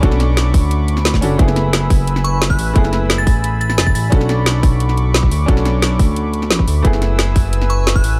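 A straight 4/4 groove at 176 BPM drives this melancholic, rolling liquid drum and bass fragment in F# minor, with a tight, up-front electronic kick and a garage kit of woody snare and metallic hats under a smooth, ring-modulated synth bass, a bright grand piano with dub echo, a detuned analog pad pumping with sidechain and chorus over Bm9 and F#m11 chords, and a glassy FM bell melody with delay that appears at 2.2 seconds and returns at 7.7 seconds, set in a dry mix.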